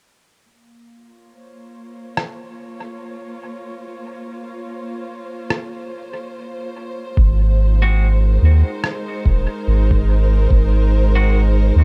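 A deep, round sub bass with tube saturation arrives up front at 7.2 s alongside a muffled, thumpy background kick in this meditative ambient dub fragment at 72 BPM in Bb minor, where a warm, bowed string section with vibrato fades in on sustained sul tasto chords from 0.5 s, a compressed rim click with dub echo sits up front from 2.2 s, and bright, clean semi-hollow guitar stabs with dub echo join the dark, dry production.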